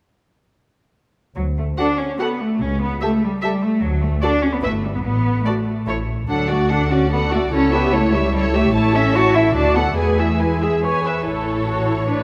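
A wet scoring-stage reverb, with a 2.2-second decay, surrounds this muted string orchestra in a veiled, con sordino haze, cut from a longer classical-period movement in a quick triple metre with a lively, graceful and rubato feel. Muted cello and double bass sections open the bass at 1.4 s, both bowed and up front, the cellos sounding distant and the basses dark with a soft attack and a smooth top. At 1.8 s the violins take the melody from a distant chamber position, a studio violin section adds a second line with gentle attacks, and a close viola section fills in the accompaniment, all with vibrato. The harmony moves among D, A7 over C#, and A, briefly passes through a chordless moment, then turns toward A with a passing E before arriving on A at 11.2 s. All five sections play until the recording ends at 12.2 s.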